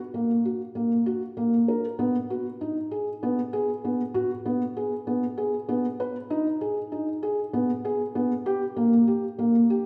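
A felt-muted upright piano plays alone from 0.1 to 9.9 seconds in this short contemporary instrumental passage, its dark, intimate tone sitting up front and ranging from Bb3 to Cb5. The music moves in a straight 7/8 at 195 BPM counted in eighths, with a pensive yet urgent mood and tuning set to A4 = 441 Hz. A wet recital hall reverb, heard from further back in the room, surrounds the thick felt sound of this portion cut from a longer piece.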